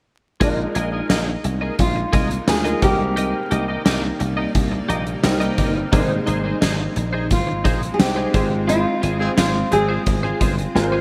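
Punchy gated 80s drums in a bright stone room drive this dramatic, moody 1980s-style pop excerpt at 87 BPM, where a fingerpicked nylon-string guitar carries the melody over a dry, foam-muted thumbed slap bass, an intimate concert grand with audible action noise and ensemble chorus, a twangy twelve-string electric riff with analog chorus and digital delay, a cloudy granular pad entering at 1.6 seconds, brief vibrato horn stabs at 9.2 seconds, and a band accent closing with piano and drum fills, all under lush hall reverb and vinyl crackle.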